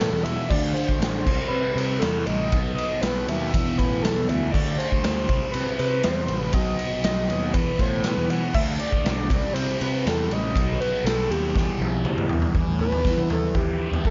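Psychedelic rock with a dark, hypnotic mood, this short cut from a longer piece moves in a straight 4/4 over a repeating cycle of E5, D5, C6 and B chords that settles on E minor near the end. A shimmering, retro pulse-width synth lead carries the melody, its full-bodied pulse and sawtooth tone sweetened with chorus, vibrato and analog delay. Beneath it, a thick, double-tracked fuzz guitar grinds out the riff with distortion and phaser, while a punchy, overdriven fuzz bass holds the low end. A raw garage drum kit sits up front, gritty and saturated with a pumping stone-room ambience, a punchy kick and a medium-tuned snare, and it breaks into a fill at 11.6 seconds. At 12.6 seconds the synth steps into a brief solo, and the whole mix sits in a light studio reverb with a dark, rolled-off top.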